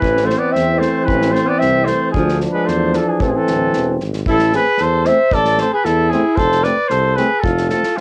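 Balkan brass band music in 2/4 with a straight feel, this short cut from a longer piece sounds restless and virtuosic, moving from Am through Dm and back before landing on F. A mellow trumpet carries the melody up front with light vibrato, while an alto saxophone with vibrato plays a second line, both heard at a distance with a roomy quality and a classical bearing. A clear, distant and roomy trombone and a dark, punchy euphonium with a smooth top, set in the background, hold the accompaniment, both dropping out at 7.8 seconds. A tuba with light vibrato anchors the bass. An unplugged drum kit played with bundle sticks adds punchy kick and a medium-tuned snare. The whole thing has the intimacy of a home cassette recording in a small, damp-sounding booth, with tape colouring the trumpet and drums.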